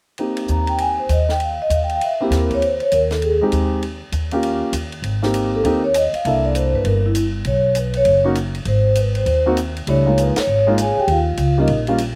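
Recorded outdoors with a dry sound, this fragment of sophisticated, relaxed small-group swing and bop moves at a brisk 198 BPM in 4/4 with a light swing on the eighths. A metallic, ringing vibraphone carries the melody with a slow motor vibrato, pausing from 3.3 to 5.5 seconds, while a polished, present grand piano comps with a slapback echo and a woody pizzicato upright bass with steel strings sits up front. A quieter, compact cocktail drum kit with dark cymbals, a high-tuned snare and a punchy kick keeps time, and the band hits a shared accent at 10.3 seconds.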